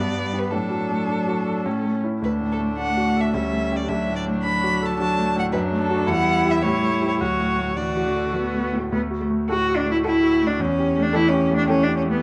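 Lively and spirited, this quick classical-period movement for piano quartet moves in a brisk 3/4 at 108 BPM in D major, cut from a longer piece. A single violin carries the melody up front, its tone rich, smooth and even, with vibrato, while a distant cello sings a clear, bowed second line beneath it. The concert grand piano supplies a bright, brilliant accompaniment with deep bass, a polished presence and long sustain, and a close viola fills in the middle with its own even, vibrato-warmed voice. All four parts sound together from the opening through to about 12 seconds, following harmony that settles around D major with passing turns to E minor and A7 before closing on an open A chord at 10.6 seconds. A moderate stone-room reverb and a dark, warm production give the ensemble a resonant setting.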